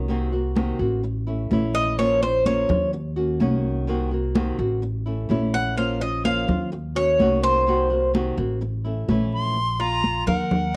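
A homespun cassette recording in a snug small room, with plate reverb on the guitar, tres and flute, frames this danceable, nostalgic excerpt of Cuban son and guajira at 127 BPM in Bb harmonic minor. A small, fingerpicked nylon-string guitar, a dark, thumpy pizzicato upright bass and ringing, high-tuned congas played with soft hands carry a cycle of Cm7b5, A, Bbmadd9 and Ebm7, while the metallic, double-strung Cuban tres enters at 1.7 seconds and takes a picked, arpeggiated solo up front. At 9.3 seconds a bright, reedy silver concert flute with vibrato brings in the melody, and the guitar stops at 9.6 seconds as the harmony settles on Bb5.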